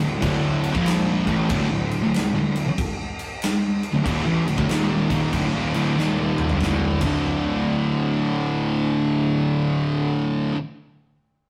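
A rough rehearsal-room recording with saturated grit and light reverb carries this heavy, ominous stoner and doom metal excerpt at 94 BPM in a swung 4/4, its riff sitting on D minor before shifting to a D power chord at 6.6 seconds. A dark, distorted fuzz guitar leads up front, with a very quiet second fuzz guitar, a bright, double-tracked crunchy overdriven guitar and a growly fuzz picked electric bass in the background. A big rock drum kit with a punchy kick and natural big-room sound drives the riff, plays a fill from 6.0 seconds, and drops out at 7.1 seconds.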